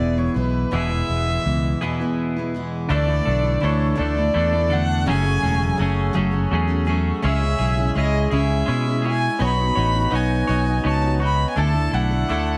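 A dark, woody fiddle carries the melody from the opening moment, its bowed line set distant with light vibrato and a slapback echo, while a picked steel-string acoustic guitar, a twangy twelve-string electric guitar and a round, punchy electric bass all sound from the start. This is a nostalgic, jangly passage of folk rock and heartland rock, cut from a longer piece, moving in a slow 6/8 at 55 beats per minute with a straight feel. The twelve-string electric carries the riff up front, clean and compressed, while the jumbo acoustic adds full-bodied, bright accompaniment and the amped bass sits up front. After a short break, a reedy pedal harmonium enters at 2.9 seconds with breathing, close-miked sustained chords kept in the background as the harmony moves from E through Dsus2, F#madd9, C#m and Badd9 before returning to Dsus2. The production is dark and warm, with a light studio reverb around the ensemble.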